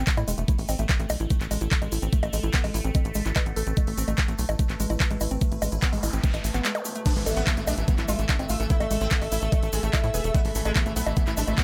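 A dry, up-front mix opens this excerpt of driving, psychedelic trance at 146 BPM in A harmonic minor, with an overdriven, knocking electronic kick and a tight, nasal sawtooth sequencer bass carrying the low end. Around them sit an overdriven drum kit with bright hats, bongos, crash and handclaps, plus a grainy egg shaker in the background. A woody, wave-folded pluck riff with chorus and tape echo moves over an evolving wavetable pad whose phaser and built-in reverb keep it morphing behind the groove, both pumping against the sidechain. A noise sweep, zap and downlifter enter at 5.8 seconds, leading into a short break, and the drop lands at 7.1 seconds. There a buzzing, shimmering sitar melody with phaser and tape echo enters, backed by a lush symphonic string section with vibrato that fills out the texture.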